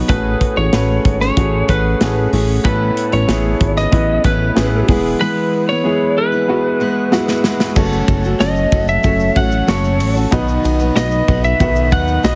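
Earnest and dramatic, this piano-driven pop excerpt sets a clear, smooth grand piano with long sustain up front beside a glossy, retro chorused synth bass and a dark, slightly broken-up electric lead guitar carrying the melody. A warm picked steel-string acoustic guitar riff sits in the background, while a modern studio drum kit with a tight kick and medium-tuned snare plays a fill from 7.1 to 7.8 seconds. A grainy, bright tube shaker then joins quietly at 7.8 seconds, all within light small-room reverb and a heavily compressed, radio-like sound.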